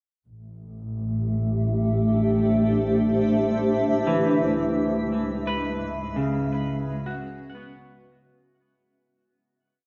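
Soaked in a lush hall reverb with a soft, dreamy top end, this short, serene ambient piece floats in a spacious haze. A bowed double bass section sustains dark, expressive roots with vibrato and portamento from 0.3 s, while a blurred, evolving granular cloud pad holds mellow chords up front, moving from Am7 to C#m7. At 4.1 s a clean, picked electric guitar enters with arpeggios drenched in chorus and tape echo, its five slow loops of unequal length drifting against each other as the bass section fades out.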